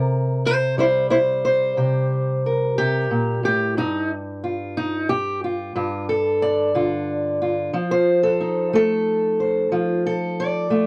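A dark, boxy fingerpicked steel-string parlour guitar plays alone and up front, ranging from G2 to D5 in this gritty, swaggering acoustic country blues cut from a longer piece. It moves at a slow 60 BPM in a straight 12/8, shifting to G5 at 3.8 seconds and F7 at 7.7 seconds. The guitar carries light reverb within a dry, close 1970s-style studio sound.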